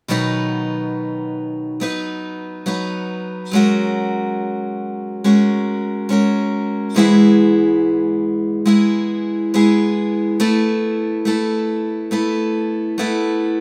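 This is a short folk piece at a relaxed 70 BPM in 4/4 with a straight feel, set in B major and carrying a warm, nostalgic mood. A single picked steel-string acoustic guitar plays throughout, from 0.1 to 13.6 seconds, providing the accompaniment across a range from G#2 to B4. Its tone is bright with the snap of fresh strings, and small finger squeaks come through, placing the instrument up front and close to the listener. The harmony moves from B to F#add9, then to E/G# at 7.0 seconds and on to Asus2, giving the passage an open, unresolved color as it is cut from a longer piece. A moderate studio reverb adds a gentle sense of space around the guitar.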